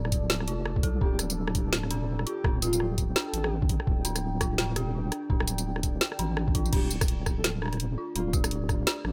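A half-time drum and bass groove at 168 BPM with a 16th-note swing drives this cinematic, heavy cut in D phrygian, built on a gritty, pitched-down sampler kick and an up-front electronic kit with a woody snare, bright hats, rim clicks, tambourine and crash. Beneath it a deep, square-and-sine wobble bass holds the low end, while a moody sawtooth pad with sub octave and sidechain pumping sits in the background and an eerie, inharmonic FM bell spins chorused, delayed arpeggios. A breathy, warbling flute-like lead with vibrato and lush chorus floats in from 1.0 to 3.5 seconds and returns at 6.7 seconds, all in a dry mix with little reverb.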